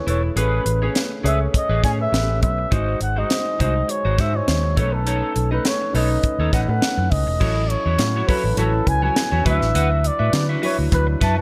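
A breathy, whispered flugelhorn carries the melody over a warm grand piano with analog chorus from the very start of this glossy, breezy 1980s jazz-funk pop excerpt at 102 BPM with a light 16th-note swing, joined at once by a clean, picked electric guitar riff also treated with chorus, a dark, round, foam-muted fingered electric bass sitting up front, and a tight, dry funk drum kit with a high-tuned snare, hi-hat, crash cymbal and gated reverb, while crisp, very quiet group handclaps arrive at 8.0 seconds, all in a small room with light reverb.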